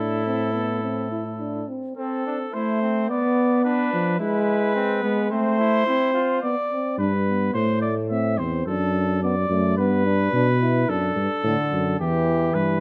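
A warm, roomy cornet carries the melody up front throughout this elegant, lively excerpt from a classical imitative canzona for brass ensemble, with a clear flugelhorn adding a vibrato-tinged second line until 6.4 s. Beneath them, a dark trombone with light vibrato provides accompaniment, while a mellow tuba anchors the bass, dropping out after 1.6 s and returning at 7.0 s. The ensemble sits in a moderate stone room reverb, and the harmony shifts from minor-mode chords toward a brighter major center partway through.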